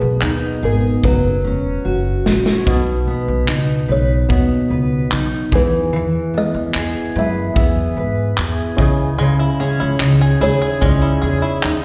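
A straight 4/4 pulse at 74 BPM settles in with the natural country drum kit, which enters at 0.2 seconds up front with a punchy kick, a medium-tuned snare and handclaps, and a drum fill runs from 1.0 to 2.7 seconds. This sunny, carefree acoustic pop piece in B major, cut from a longer performance, is carried by a ringing, woody kalimba melody with plate reverb, slapback echo and digital delay, over a full-bodied jumbo steel-string guitar that is fingerpicked, double-tracked and placed up front. A warm pizzicato upright bass anchors the low end as the harmony moves from G#m/B and F#sus4 into B, E and C#madd9. At 2.7 seconds a barky, reedy electric piano joins in the background, and at 9.2 seconds a twangy bluegrass banjo adds bright arpeggios, both treated with plate reverb and slapback echo. The sound is that of a live gig heard through the venue's PA, with moderate club reverb, recital hall ambience and a dulled top end.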